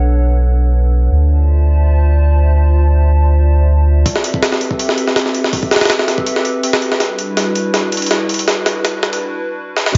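Dim and lightly reverberant, with its top end capped at 7.5 kHz, this dark, nostalgic drum and bass and jungle excerpt opens on a warbling, lo-fi pad holding chorused chords over a round, deep sub bass that drops out at 4.0 s, just before a gritty, pitched-up sampler-style kit with a thumpy kick and high-tuned snare, re-recorded in a large room, enters at 4.1 s and drives a build-up with fills before a brief break at 9.2 s.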